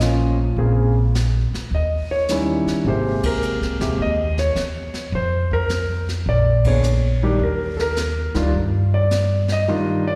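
A warm concert grand piano carries the melody up front, ranging from C3 to Eb5 with a natural tone, deep bass and a touch of slapback echo. This short jazz piano trio passage, cut from a longer piece, swings in 4/4 at 106 BPM in Eb major, with a warm, swinging mood. A woody pizzicato upright bass with steel strings sits close alongside it, covering the low register from Ab1 to G2 until 9.6 seconds. A brush drum kit plays further back, with dark cymbals, a medium-tuned snare and a boomy kick, and the band hits accents together at 3.1 and 6.6 seconds. The harmony moves from a rootless Gbmaj7 through Eb7b9, Abmaj9, Fsus4 and Bb before settling on Ebmaj7, all heard as a live gig through the venue's PA with light recital-hall reverb.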